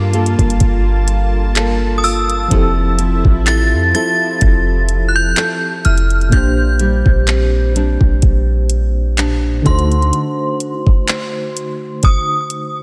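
A dreamy, romantic, gently swung contemporary R&B excerpt opens with an inharmonic FM synth chime singing the melody through ensemble chorus and delay, over a warbling, phaser-tinged FM electric piano with tremolo, a lush detuned sawtooth pad that stops at 6.3 seconds, woody fingerpicked nylon-string guitar arpeggios with delay, a boomy sine 808-style bass up front, and a produced drum kit of knocking kick, metallic hi-hat and handclaps, set in a light digital ambience.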